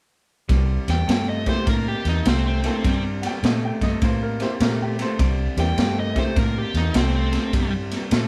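A soulful, laid-back electric blues shuffle at 102 BPM in C mixolydian opens at 0.5 s on a C7 chord, with a slightly broken-up guitar riff through a small old amp, a round, foam-muted fingered bass and a gritty, saturated garage drum kit of punchy kick, snare and ride. A biting overdriven guitar carries the melody from 0.9 s, while a detuned, jangly honky-tonk upright piano accompanies in the background and a brilliant, woody second piano line appears at 3.2 s. The band plays live together in a small room with moderate reverb, and this short cut comes from a longer piece.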